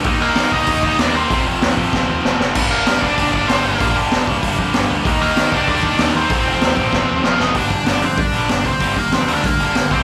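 Heard through a club PA in a small, reverberant room, this angry, urgent punk rock cut in G minor charges at 192 BPM in straight 4/4, with a raw, saturated garage drum kit up front (high-tuned snare, punchy kick, crash and hi-hat, fills at 1.9 and 6.9 seconds), a growling overdriven picked bass, biting overdriven and tight distorted riff guitars with slapback echo in the background, a very quiet double-tracked high-gain guitar that drops out at 7.6 seconds, and a nasal parked-wah lead guitar carrying the melody up front over an Eb–F–Gm progression.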